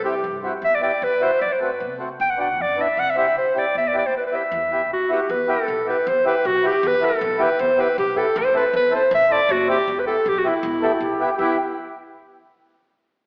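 Festive yet bittersweet, this klezmer excerpt in E minor moves at 156 BPM in a straight 2/4 and speeds up as it goes. A smooth-topped clarinet carries the melody up front in a classical style, while a reedy, full accordion supplies the accompaniment and a woody, growly upright bass played pizzicato sits low and dark beneath them. The harmony turns through E minor, a diminished chord on F#, B minor and C, later reaching A minor before settling back on E minor. One phrase gives way to a second at 5.3 seconds, and at 10.8 seconds a punchy, vintage-toned trombone with light vibrato adds a forceful, jazz-style second line. A wet reverb with a 1.6-second decay places the group in a church or concert hall, though the sound has the narrow, band-limited character of AM radio.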